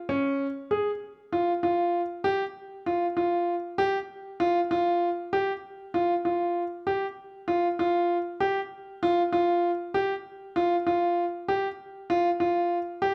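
A bright grand piano carries this short contemporary instrumental alone, its brilliant, natural tone sitting up front from 0.1 seconds until the cut at 13.1 seconds. The piece moves in an urgent, hypnotic 5/8 at 195 BPM counted in eighths, with a straight feel. The piano stays within a narrow span from Db4 to Ab4, tuned to A4 = 438 Hz. A brief opening passage gives way at 1.0 seconds to a longer second section that runs to the end. A wet recital hall reverb with a 1.4-second decay surrounds the piano, lending the close, vivid playing a sense of space.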